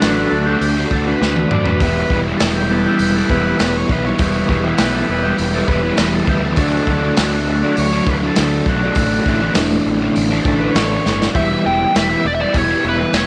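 A straight 4/4 groove at 101 BPM opens this hypnotic, mysterious psychedelic rock passage in E dorian, cut from a longer piece, with a crunchy breakbeat kit of tight kick, medium-tuned snare, hi-hat and toms sounding saturated and gritty with a rolled-off top, and a drum fill arriving at 1.2 seconds. Underneath, a fuzz-laden fingered electric bass growls low and punchy with overdrive, while an overdriven semi-hollow guitar, dark and double-tracked, sits up front picking a riff through a rotary speaker. A vintage, buzzy transistor combo organ holds clean sustained chords through spring reverb and carries a solo through the opening stretch as the harmony moves from D to Em and on to Asus4. At 11.4 seconds a bright, biting lead guitar cuts in up front with a melody shaped by wah, overdrive and slapback echo as the progression settles back on Em. The whole band shares a small-room ambience with a moderate echo-chamber reverb, tuned slightly low to A4 = 438 Hz.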